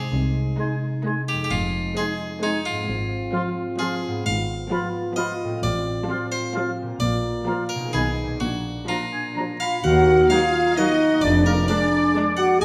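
A nasal, thin harpsichord melody opens this playful, whimsical film cue at 131 BPM in 3/4, over mellow French horn chords and ringing, fingerpicked harp arpeggios, with a focused, bowed double bass section and a lush cello section on the bass; from 0.6 s an airy silver flute, a distant oboe, a roomy background clarinet, a rich violin section and a close viola section's accompaniment join, along with a very quiet, dark violin section gliding with portamento on the melody, before a soft-attack tuba reinforces the bass from 9.8 s, the whole ensemble set in a wet scoring-stage reverb.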